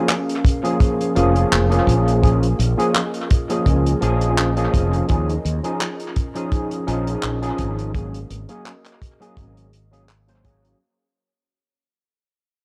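An 84 BPM groove in 4/4 with a gentle swing on the sixteenths sets this melancholic, nostalgic vaporwave piece in Bb minor, moving from Bbm7 to Eb9sus4 at 5.1 seconds and Ab9sus4 at 7.9 seconds. An overdriven tine electric piano carries the accompaniment up front, its barky, gritty tone coming through a combo amp and colored by ensemble chorus and analog delay. Beneath it, a warbling, detuned pad of square and triangle waves holds sustained chords in the background, dark and lo-fi with a slow attack, long release, chorus and its own reverb. A saturated, tight kick pumps up front while a soul drum kit adds handclaps and hi-hat with a rolled-off top and analog delay, and from 1.2 seconds a round, punchy fretless electric bass enters with lush chorus. The echo-heavy mix carries a cassette-tape character and light studio reverb, and the music fades out from 3.2 seconds to the end of this fragment cut from a longer piece.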